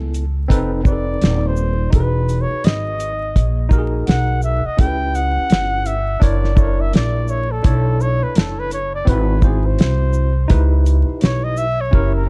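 A swung sixteenth-note groove in 4/4 carries this nocturnal, cool jazz-hop cut, taken from a longer hip hop piece. The cloth-damped drum kit sits up front with a dry, thuddy sound, pairing a fat snare and a tight kick with hi-hat and shaker under a rolled-off top, and a short drum fill arrives at 11.9 seconds. Beneath it, a woody pizzicato upright bass on steel strings holds the low end, also close and prominent. A worn, slightly out-of-tune tine electric piano, lightly overdriven and heard through its built-in speakers, voices extended chords such as a rootless F#m11 and a G#7alt with a bright edge. Over this, a breathy flugelhorn solos from 0.9 seconds in a whispered, intimate jazz style, with soft attacks, scooped notes, vibrato and tape echo. The production is dark, dusted with vinyl crackle.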